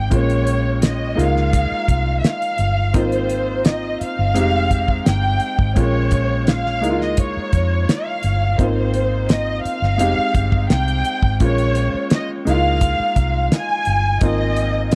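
A dry, close 1970s-style studio sound frames this smooth, romantic soul passage, where an expressive bowed violin section carries the melody with vibrato, portamento, a soft attack and tape echo over a clear, worn grand piano, a dark, round, foam-muted fingered electric bass and a damped acoustic drum kit with a fat snare and tight kick, as Bbm7, Db69, Ab69 and Fm9 chords cycle.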